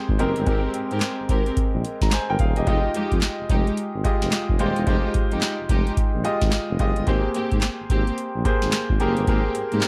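A swung sixteenth-note groove from a booming analog drum machine, with its deep kick, crisp snare, metallic hats and handclaps up front, drives this upbeat, flirty new jack swing R&B excerpt, as a clear concert grand piano sits forward on an Abmaj9 chord, a mellow tuba with vibrato carries the bass in jazz style, and a dark, lush bowed string section adds expressive stabs with delay, set in light small-room reverb and a dark production.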